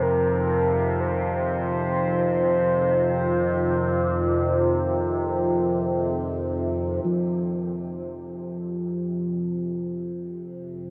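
Vast and ominous, this free-time dark ambient drone excerpt opens on an F5 chord, with a resonant, overtone-sweeping drone up front carrying chorus, reverb and phaser throughout, a deep, moody sawtooth pad with chorus and reverb holding sustained chords until 7.0 s, a round, horn-like synth lead with vibrato, chorus and tape echo singing a brief melody until 6.0 s, and a metallic, slowly beating bronze singing bowl ringing quietly underneath, all bathed in huge reverb and the warbling pitch drift of worn cassette tape.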